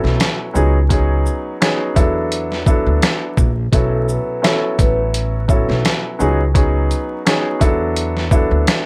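Reflective and moody, this short excerpt from a longer boom-bap hip-hop piece settles into a relaxed, lightly swung groove. A gritty, compressed sampler-style drum kit sits up front, pitched down, with a thumpy kick, a medium-tuned snare, hi-hat and shaker, and a small-room character to its sound. A woody upright bass played pizzicato on gut strings gives a dark, acoustic low end, while a mellow baby grand piano, also up front, carries the accompaniment through filtered, plate-reverbed chords that move among B9sus4, C#9sus4 and E9sus4. A vibraphone with soft mallets and the motor off slips in from 3.7 to 5.0 seconds with a brief, smooth, ringing melody, set in the background and softened by filtering, plate reverb and tape echo. Vinyl crackle and a light reverb add a dusty, intimate sheen to the whole recording.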